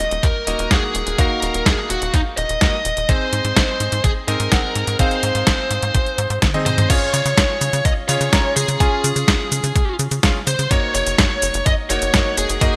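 A bluesy, overdriven lead guitar sits up front, carrying the melody with picked, distorted tone and a trail of delay through this danceable, melodramatic italo disco excerpt. Beneath it, a clear, vintage electric grand piano plays stabs with a clangy low end, softened by subtle chorus and a low-pass filter. A tight sequencer bass drives the groove with a punchy, saturated sawtooth-and-square sound, its filter pluck and moving notch giving each fast-attack note a decaying snap. The drums pair a thumpy electronic kick, entering at 0.2 seconds, with a detuned 8-bit digital drum machine placed up front, its medium-tuned snare, hi-hat, cabasa, toms and crash carrying a tape-warm, sampler-style character from being re-recorded in a small room. The harmony moves from Ebm to Ab, and a drum fill at 6.4 seconds leads into a new section at 6.9 seconds over Db and Gb6. A lush hall reverb and bright 1980s-style digital production frame this cut from a longer piece.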